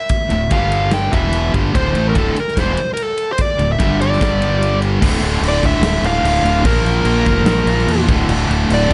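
Aggressive and driving, this short hard rock passage in D minor at 147 BPM opens at 0.0 seconds with a dark, smooth, picked lead guitar melody up front, its overdrive carrying a slapback echo, before a big acoustic rock kit with a punchy kick, medium-tuned snare and bright crash and ride cymbals joins; from 0.3 seconds a round, fuzz-laden fingered bass pushes forward beneath three picked riff guitars (a very quiet double-tracked crunchy one, a bright overdriven one and a scooped high-gain one in the background), all in a dry sound that shifts to a new section at 5.0 seconds.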